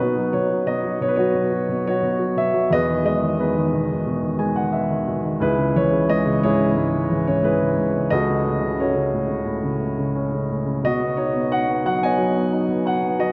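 This tender, intimate acoustic folk-pop ballad moves at 88 BPM in a straight 4/4 in B mixolydian, carried for 13.3 seconds by a solo baby grand piano with a dark, mellow, vintage tone and long sustain, placed up front. The piano moves through Badd9, Emaj7, C#m7 and F#m/C# before returning to Badd9, adding a fill from 4.1 to 5.4 seconds. The sound sits in a vast, echoing cathedral space with a heavy reverb tail.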